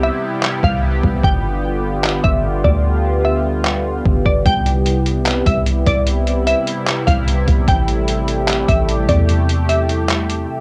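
Dreamy and blissful, this half-time atmospheric cloud-rap excerpt at 149 BPM in C major drifts over a resonant, detuned sawtooth pad with chorus and sidechain pumping, a glassy, crystalline wavetable pluck melody through analog delay and cassette tape, a deep, round 808-style bass, and a muffled, overdriven sampler-style drum kit of thumpy kick, hi-hat and handclaps entering at 0.4 seconds, all moving through Cmaj7, G7 and Am7 under a light reverb on a cassette home recording.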